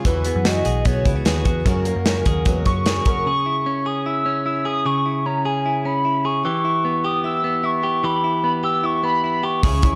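A bright, youthful slice of jangly indie pop opens with twangy, up-front clean electric guitar arpeggios carrying a slapback echo, a shimmering, woody twelve-string acoustic, punchy studio drums and a round, foam-muted vintage bass, all moving through Eadd9 and F#add9 chords. Over this floats a warbling, nostalgic synth lead melody, detuned and mellow with chorus, vibrato and its own slapback echo. By 3.3 seconds the drums, bass and acoustic have fallen away, leaving the electric guitar and lead over C#m and Em in a dark, warm studio ambience until the full band returns at 9.6 seconds.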